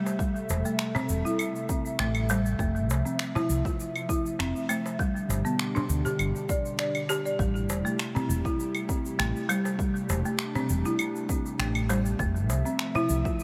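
A dry, rustic folk marimba with medium hard mallets plays tape-echoed arpeggios up front in this meditative organic downtempo piece at 100 BPM in A minor, moving through Am7, Fmaj7 and G over an airy, breathy pad with chorus and sidechain pumping, a round, dark fretless electric bass entering at 0.5 seconds, a punchy electronic kick, layered electronic shaker, finger snaps and claves, and a small clay-shelled darbuka, all set in light reverb and digital ambience.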